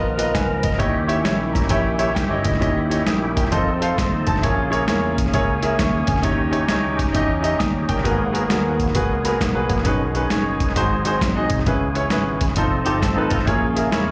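Uptempo gospel with a swung, soulful and fervent feel, heard as a short cut from a longer live set played through a club PA with moderate room reverb. A clear, intimate baby grand piano sits up front, its action noise audible under plate reverb and slapback echo, and it breaks into fills around 1.3 and 9.0 seconds. A reedy tonewheel organ, carrying key click, chorus vibrato and a fast rotary speaker, holds chords in the background, while a very quiet section of stopped, nasal, metallic French horns adds its own sustained harmony. A punchy fingered electric bass anchors the low end beneath a gritty, overdriven sampler-style drum kit with a thumpy kick, a medium-tuned snare and hi-hat, treated with slapback echo and pushed forward. Near the close, at 12.9 seconds, a clean, compressed electric guitar, recorded direct and bathed in spring and plate reverb, slips in with a brief second line as the harmony moves through rich chords such as C#13, D#7b9, G#m9 and A#m7b5.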